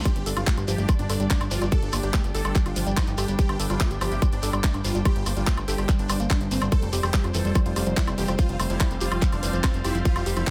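Alien and psychedelic, this excerpt of psychedelic trance drives along at 144 BPM in a straight 4/4, with a tight, up-front electronic kick and a layered garage kit of handclaps, hi-hat and woodblock, joined by a grainy shekere set in the background. A fat, nasal analog bass holds the low end, while a woody, wave-folded pluck riff with tape echo and a huge, detuned supersaw melody with phaser and vibrato ride the sidechain pumping. Behind them, a lush bowed string section and a resonant drone with moving overtones and slow attack fill out the backdrop, all set in a digital ambience as the chords move from G5 to F5 at 6.7 seconds.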